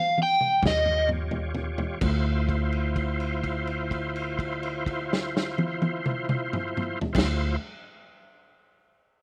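In a straight 12/8 at 42 BPM, this mournful, smoky slow blues in D minor opens with a brief, dark overdriven semi-hollow guitar solo phrase through slapback echo, while a saturated garage drum kit with a punchy kick plays a fill as the tempo slows; a thick, gritty tonewheel organ on slow rotary speaker and chorus vibrato then joins a woody pizzicato upright bass at 0.6 s on an Eb7 chord before the group settles into a long held Dm9 from 2.0 s, all in a dry, roomless outdoor sound.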